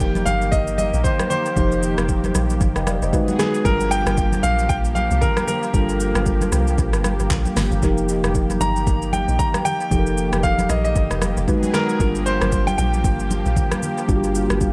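A clear, intimate grand piano carries the melody up front in this late-night, soulful amapiano excerpt, its polished tone touched by audible action noise and trailed by dub echo. Set at 115 BPM in 4/4 with a 16th-note swing of 58% in G minor, the piece moves through F9sus4, Abm7 and Gm7 chords. A mellow tine electric piano plays accompaniment in a clean, direct voice, also sent through dub echo, while a lush unison pad holds sustained chords with a thick, nasal, detuned sawtooth sound shimmering in chorus. Underneath, a round, percussive log drum bass supplies dark, decaying low notes with a fast attack. The overdriven deep house kit sits prominently with a deep kick, punchy snare, handclaps, hi-hat, rim click and shaker, and congas with thick skins and hard hands join in the background from 0.2 seconds. The mix is echo-heavy with light reverb, giving the groove a spacious, nocturnal atmosphere.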